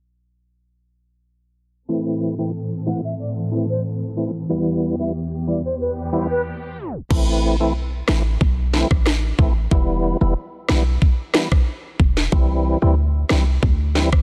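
Bouncy, sultry dancehall in which a fat, lightly overdriven tonewheel organ with chorus vibrato pumps beside lush bowed strings while a distant, unsteady wooden flute with delay carries the melody through a filter sweep, until a tape stop lands at 7.1 seconds and a punchy, tight 808-style bass and an electronic afro-pop kit with knocking kick and sharp snare join the organ up front.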